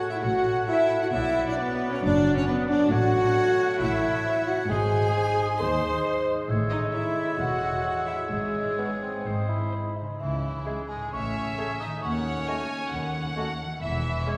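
In a reverberant concert hall, this playful, mischievous C# minor film cue at 134 BPM sets a rich, vibrato-laden violin section on the melody over a bright clarinet, distant cor anglais, hollow flute and second violins, with mellow bassoon, background violas, ringing harp arpeggios, cellos and double basses beneath, and tight French horn chords that hold until 9.7 seconds before a delicate, bell-like celesta joins the melody at 10.2 seconds.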